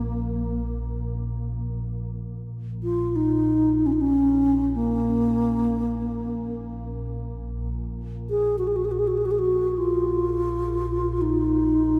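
From the opening second, an airy bass flute carries a haunting, unsteady melody with tongued notes, vibrato and a diffuse ambient delay up front, over a dark, glassy FM pad drone on a low Bb with a slow attack, long release, ensemble chorus and built-in reverb, all set in a huge, dreamy reverb for a meditative, free-time piece of world meditation music in Bb minor that is cut from a longer work.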